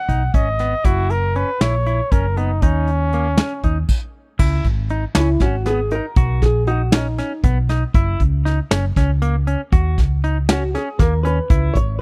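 A mellow trumpet with light vibrato and scooped notes carries the melody up front until 3.9 s, and after a brief stop a dark, double-tracked hollow-body jazz guitar takes the solo from 4.4 s in this tense, brooding progressive instrumental in 7/8, set over clean semi-hollow guitar arpeggios, a round, amped short-scale bass and a soft brush kit with dark cymbals and a punchy kick, in a dry, close 1970s-style studio sound.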